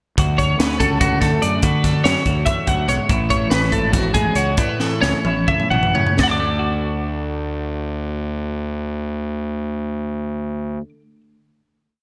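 This short math rock and midwest emo piece in D lydian and 7/8 feels playful and wistful. It races along at 244-288 BPM in eighths before slowing from 3.1 seconds, moving from Dmaj7 to Amaj7 and settling on a D chord at 6.2 seconds. One twangy, compressed twelve-string electric guitar repeats a clean picked ostinato with subtle chorus, while a second bright twelve-string rolls fingerstyle arpeggios up high through analog chorus, over a dark, round fuzz bass riff and a crisp fusion kit with a high-tuned snare, a tight kick and a pumping small-room sound that closes with a fill from 4.8 seconds, all set in a lush hall and bright 1980s-style digital production.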